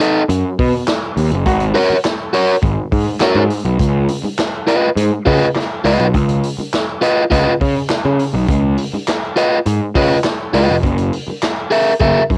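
Gritty and playful, this short funk excerpt in a straight 4/4 feel is carried by a crunchy overdriven guitar up front and a round, fuzzy picked electric bass joining at 0.3 seconds, over a vintage acoustic drum kit with handclaps, hi-hat, a tight kick and a medium-tuned snare. A clear, smooth-topped trombone with vibrato drops in for a brief note at 1.5 seconds as the band hits an accent that runs to 3.8 seconds, where the groove settles onto a Db9 chord. The home cassette recording carries light reverb, with tape colouring on the guitar, drums and trombone.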